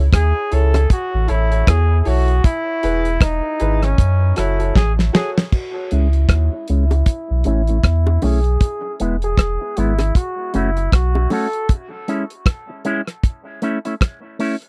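Dub reggae in C# minor at 78 BPM with a swung, spacious and deep feel, built on a round sub bass and a damped 70s drum kit with a fat snare and dark cymbals, as a distant flugelhorn with scooped notes carries the melody through dub echo, a woody upright piano adds echoed stabs in the background until 5.4 s, soft high-tuned bongos tap behind, and a twangy envelope-filtered electric guitar enters at 5.9 s under a filter sweep, all in a dry, close 1970s-style studio sound.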